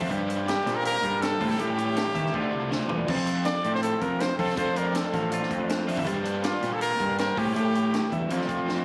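A straight 4/4 pulse at 161 BPM drives this playful, bright math rock and midwest emo fragment. A compact cocktail drum kit with a high-tuned snare, punchy kick, hi-hat, toms and crash plays fills around 2.3 seconds and at 8.7 seconds, under a growly, fuzz-soaked fingered bass sitting up front. In the background, a twangy clean guitar supplies accompaniment, a slightly broken-up lo-fi guitar through a small old amp picks arpeggios with analog chorus and tape echo, and a double-tracked overdriven guitar carries a crunchy riff with tremolo, while from 0.5 seconds a clear, close-miked trumpet with light vibrato takes the solo melody up front over chords moving from Gm7 and A7b9 through Dm7 and Fmaj7, in a compressed, phone-in-the-room sound with little reverb.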